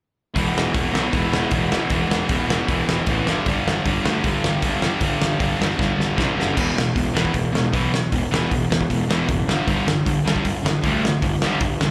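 Raw, aggressive punk rock heard through a club PA at a live gig, with a bright, compressed distorted electric guitar riffing in the background beside a sludgier, overdriven second guitar, a growly fuzz picked electric bass, and an up-front loose indie drum kit with a fat snare, boomy kick, crash cymbal and hi-hat, which plays a fill from 5.8 to 6.6 seconds before the riff shifts to a new section in this short cut from a longer piece.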